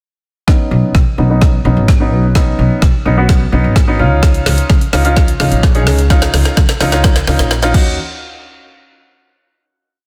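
A straight four-on-the-floor dance-pop beat drives this bittersweet yet confident short piece, with a punchy, layered deep house kit of kick, snare, dark hats and crash sitting up front and running a drum fill through the whole build from 0.5 seconds. A growly pizzicato upright bass with steel strings plays off-beat lines under a baby grand piano's open, long-sustained syncopated chords in close voicing, both pumping against the kick, while a filter sweep works on the piano as the build climbs through chords from Badd9 to Dbadd9 to Ebm7. At 8.0 seconds everything arrives at a final hit, captured dry in a dense, heavily limited modern master.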